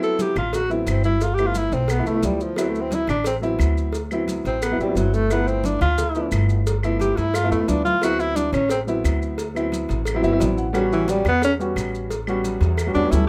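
A breathy tenor saxophone opens this sophisticated, sunny Afro-Cuban jazz excerpt, soloing up front over a dark, mellow baby grand piano, bright damped congas and grainy, close maracas. The saxophone plays in a jazz style with light vibrato, scooped notes and a smooth top, pausing at 8.8 seconds before returning at 10.9 seconds. A woody, thumpy pizzicato upright bass sits up front with the piano. A tight, high-tuned cowbell and woody claves sound distant and roomy in the background. The piano slips in a brief fill around 10.2 seconds, as the harmony moves through rich extended chords from Am13 through G13 and D13 to a closing A13, all wrapped in light reverb.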